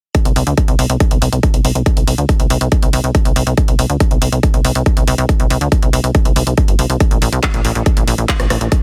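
A layered, produced electronic kick drum sits up front and carries this brief uplifting trance passage in a steady, straight 4/4, thumping from 0.1 s through to the end. An analog drum machine, re-recorded in a small room, adds handclaps, hi-hat and rim click at a lower level, with sidechain pumping on the hats. A plucky analog bass enters at 0.3 s in a low register between G1 and D2, its sawtooth and pulse-wave tone shaped by a fast-attack, decaying filter pluck that sounds funky and evolving, and it pumps under a sidechain. The mood is soaring and euphoric, and the dry mix has little reverb, keeping the groove tight and close. The passage is cut from a longer piece and stays in a single section throughout.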